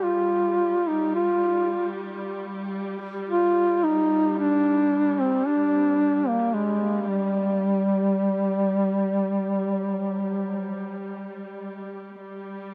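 Caucasian folk lament in a mournful, solemn rubato, where a mellow duduk sings the melody up front with vibrato and tape echo until 11.0 seconds, over a rich, lush bowed string section holding a focused drone through 12.7 seconds, all captured in a dry, close 1970s-style studio sound with light reverb.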